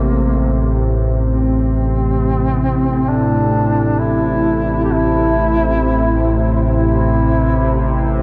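Ominous and vast, this dark ambient drone drifts in free time around A minor, opening on an up-front analog drone whose vintage, warbling sawtooth and pulse-wave tone is thickened with chorus. From the outset, a mellow, distant duduk carries a folk-style solo melody with vibrato over it through a diffuse ambient delay, and at 2.6 seconds a deep, moody pad of detuned unison sawtooths and sub-octave sine enters in the background with chorus and its own reverb. The whole short excerpt sits in a huge, dark ambient reverb with an 8.4-second decay.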